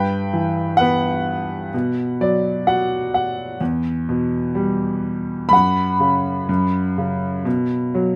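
Free, rubato timing stretches a slow 4/4 pulse of 63 BPM in this short classical passage for solo piano, cut from a longer piece. The mood is reflective and melancholic, and the grand piano carries everything alone across its 8.2 seconds, ranging from E2 up to B5. Its sound is intimate and somewhat boxy, placed up front with close, detailed microphones that catch audible action noise from the instrument. The harmony moves from Emadd9/G through B5, Em and F#5 before settling back on B5 at 7.5 seconds. A brief piano fill between 1.7 and 3.6 seconds adds a lyrical turn within the phrase, all set in a light reverb.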